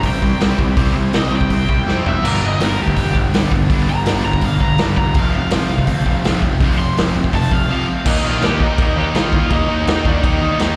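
Punk rock at 165 BPM, energetic and upbeat, this excerpt from a longer piece sounds like a live gig heard through the venue's PA in a reverberant hall: a bright, overdriven garage guitar solos over riffs from a distorted electric guitar in the background, a very quiet, dark, sludgy guitar and a double-tracked, tight distorted guitar, while a growly fuzz bass and a punchy, gritty, up-front drum kit drive the song through a drum fill at 1.9 seconds and a break at 7.7 seconds before a new section begins at 8.1 seconds.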